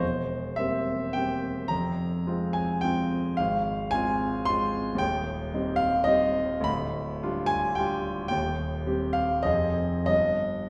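A warm, smooth grand piano with a vintage tone sits up front in this short excerpt, a romantic character piece for solo piano in 3/4 that moves with a flexible, rubato feel between roughly 91 and 117 BPM. The mood is passionate and bittersweet, opening in F minor before turning toward C minor at 5.0 s. The piano covers a broad span from D1 up to C6 across the full 10.7 seconds, so deep bass notes sit beneath the upper lines. The harmony passes through C7 over E, F minor and its inversion, then C minor, G7 over D, C minor again and back to F minor, before the harmony falls away at 10.1 s. The sound carries the generous reverb of a recital hall, giving the playing a resonant, church-like spaciousness.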